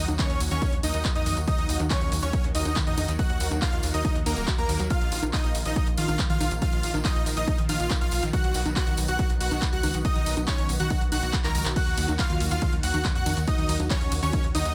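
Driving and soaring, this uplifting trance excerpt is cut from a longer piece and moves in a straight 4/4 pulse, with every melodic part breathing to sidechain pumping. Huge, detuned supersaw chords carry the melody with tape echo, while a catchy plucky unison lead with vibrato and lush chorus rides high in the background as a second line. Beneath them a silky, nasal analog string pad holds sustained chords through ensemble chorus, and a full-bodied unison pluck spins arpeggios with tape echo, also set back in the mix. A tight sawtooth sequencer bass drives the low end against a layered, tape-warm electronic kick, joined by an analog drum machine of congas, handclaps, hi-hat, ride and crash, plus a jingly, close tambourine. The harmony moves from Ebm through Bbsus4 and B, and a drum fill at 11.4 seconds leads back to Ebm, all in a dry sound with little reverb.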